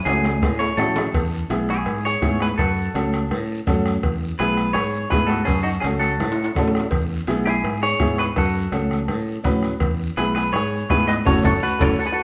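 A wet, roomy studio reverb surrounds this sunny, joyful cumbia clip, taken from a longer piece and moving at a brisk 166 BPM in 4/4 with a straight feel in E major. A clean, twangy electric guitar sits up front carrying the melody, its picked notes washed in spring reverb, and it opens with a brief solo over a drum fill before the full band settles into a chord pattern that alternates between F#m and E. A clear, woody upright piano with a slightly boxy tone fills out the accompaniment, while a direct, fingered electric bass anchors the low end. The percussion blends a soft-beater bombo with a vintage, band-limited character, bright high-tuned congas that sound distant in a large room, ringing metal timbales and cowbell in the background, and a raspy guiro heard close and dry. A fingerpicked bluegrass banjo joins at 1.7 seconds as a percussive second line, and further drum fills arrive at 6.2 and 11.3 seconds, the last coinciding with a band accent.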